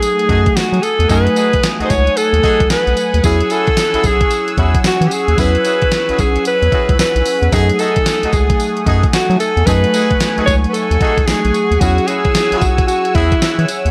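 A swung new jack swing groove at 112 BPM in 4/4 drives this slick, bouncy R&B clip in F# dorian, with a crisp 8-bit drum machine up front supplying a thumpy kick, fat snare, hi-hat and tambourine soaked in gated reverb, joined at 0.3 seconds by a round, deep analog bass with a dark, sustained tone. Over chords moving between F#m69 and E69, a lush, dreamy FM electric piano with a soft pad layer and chorus shares the harmony with a swirling, evolving phased analog pad, while a smooth jazz-style horn section adds ensemble stabs until 13.3 seconds. Leading the way is a warm alto saxophone, up front with vibrato and delay, singing a pop-style melody in a lightly reverberant space.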